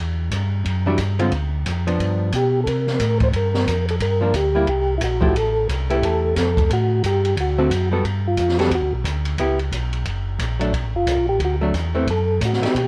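A flute-like, percussive tonewheel organ carries the melody from 2.4 seconds in this swinging, bluesy soul jazz organ trio excerpt, over a round, key-clicking organ bass turning through a slow rotary speaker, a dark, hollow-body archtop guitar comping up front, and an acoustic drum kit with dusky cymbals, a high-tuned snare and a boomy kick, all colored by the warble and pitch drift of worn cassette tape.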